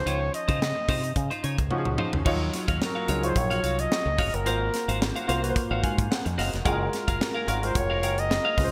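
Polished 1980s jazz-funk pop at 109 BPM in Eb dorian, this bittersweet, night-tinged excerpt sets a close-miked flugelhorn melody with vibrato over an intimate grand piano with audible action noise and analog chorus, a clean, compressed guitar riff bathed in lush chorus, punchy envelope-filtered fingered bass and an up-front funk kit with a high-tuned snare and gated reverb, as a drum fill at 1.7 seconds leads from Dbmaj9 into a passage moving through Ebm9, Ab13 and Gbmaj9, with a piano fill at 5.6 seconds, framed by gleaming 1980s-style digital production and small-room ambience.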